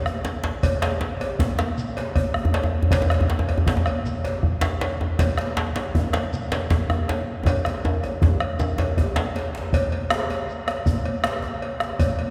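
West African traditional drum ensemble excerpt in 12/8 at 106 BPM, earthy and driving, where a round, close bombo and a deep, compressed, saturated djembe played with soft hands sit up front, while a second djembe with metal rattles and hard hands sounds distant, a metallic cowbell joins at 0.6 seconds, a grainy, mellow shekere stays very quiet, and a drum fill from 7.5 seconds leads into a new section at 9.7 seconds after the up-front djembe drops out, with a long church reverb giving the ensemble a spacious hall sound.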